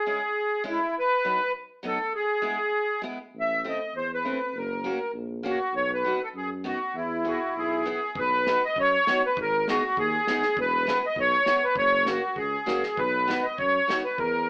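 Bouncy and festive, this alpine folk dance-band excerpt in 2/4 at 100 BPM puts a sweet, reedy accordion with light tremolo tuning up front over picked steel-string acoustic guitar, joined at 3.3 seconds by a mellow, smooth tuba and at 8.2 seconds, as the key moves from E major to B major, by a dry soul drum kit with tight kick and medium-tuned snare, all heard as a band playing live in one room with moderate reverb and an AM radio sound.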